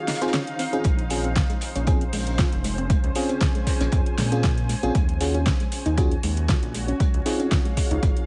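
A punchy, overdriven electronic kick sits up front in this late-night deep house excerpt, arriving with the deep, round analog bass at 0.8 s after a short break, amid a distorted deep house kit with fat snare and metallic hats, a very quiet, muffled and gritty cloth-damped acoustic kit, dark FM electric piano stabs with chorus, phaser and delay, soft detuned pluck arpeggios in the background, and a blurred granular cloud pad, with the piano, pluck, pad and bass pumping to the sidechain under light reverb and vinyl crackle.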